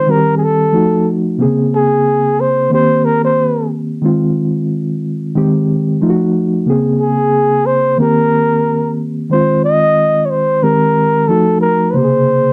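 A breathy flugelhorn carries the melody from the opening moment, its soft attack and gentle vibrato giving the line a whispered, intimate quality, with a slapback echo trailing each phrase. Beneath it, a reedy electric piano supplies mellow accompaniment through its built-in speakers, colored by a medium tremolo. Both parts sit up front and play together across the full 12.5 seconds of this soulful, relaxed R&B passage, which is cut from a longer piece. The groove has a light swing on the sixteenth notes, and the harmony cycles through lush chords such as Bbm9, Cm7, Fm7, Abmaj7 and F7b9. The sound is dry and close, recalling a 1970s studio with very little reverb.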